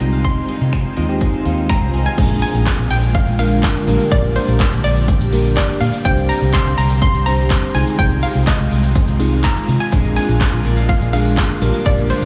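Dance-pop at 124 BPM in a straight 4/4, this short cut from a longer piece feels energetic yet bittersweet, moving through chords such as Ab6/C, Bb7, Gm and Csus2. A hollow, bouncy square-wave pluck carries the melody with chorus and analog delay, while a bell-like, clean tine electric piano supplies the accompaniment through analog chorus and adds a fill from 0.7 to 2.2 seconds. Beneath them an ethereal, airy pad holds sustained chords in the background, its ensemble chorus and built-in reverb giving it a warbling, vintage haze while sidechain pumping makes it breathe with the beat. A punchy analog drum machine sits up front with kick, hi-hat, handclaps, finger snaps, shaker and crash, joined by a dark, round, foam-muted fingered electric bass that also pumps with sidechain. A silvery steel-string zither rings out arpeggios in the background through delay, dropping out at 4.3 seconds and returning at 9.9, and a very quiet electronic swell lands as an impact at 2.2 seconds, all set in light studio reverb.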